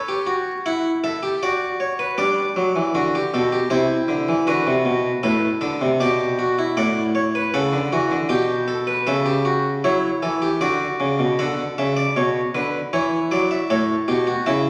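A steady, straight pulse in 3/4 at 78 BPM sets a stately, elegant pace for this short cut from a longer baroque-style fugue in three voices. A single harpsichord plays alone throughout, spanning A2 to G5. Its Flemish-style tone is brilliant and plucked, taken from one set of strings, close-miked and placed up front with a full, dry body. A wet recital hall reverb surrounds the instrument, and a vinyl crackle sits beneath the sound. The harmony moves from A through D/F#, G, Cadd9 and G/B toward D at 10.6 seconds, then turns to Bm7 at 11.4 seconds for a brief closing passage that passes through Dmaj9/E before settling on A at 13.7 seconds.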